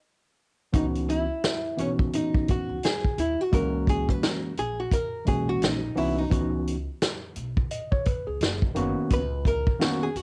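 After a short break, the electric piano, bass and drums enter at 0.7 seconds in this cool, nocturnal slice of jazz-hop cut from a longer piece, with a swung sixteenth-note feel. A worn, slightly out-of-tune tine electric piano sits up front, playing clean accompaniment through its built-in speakers with cassette tape colour and plate reverb, moving from C#m11 to F#9 and back before closing on F#6 and Bmaj9/C#. Beneath it, a woody, dark pizzicato upright bass on steel strings holds the low end. A natural-sounding vintage drum kit in a studio room, with a medium-tuned snare, tight kick and hi-hat, is placed up front and carries its own cassette tape grain. Over this, a hollow-body archtop guitar, miked and amplified, takes the solo from 0.8 seconds with a picked, compressed, dark electric tone, also treated with tape and plate reverb. The whole has the feel of a home cassette recording in a moderate booth ambience.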